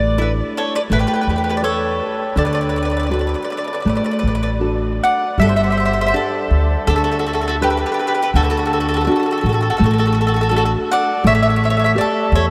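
A round, up-front mandolin carries the melody with a tape echo over a second, softer mandolin line, dark fingerpicked nylon-string guitar with audible finger squeak, and a woody, thumpy pizzicato upright bass in this romantic, lively Italian folk serenade at 82 BPM, played rubato and drenched in a huge, dreamy ambient reverb as the key moves from D major to G major at 5.4 seconds.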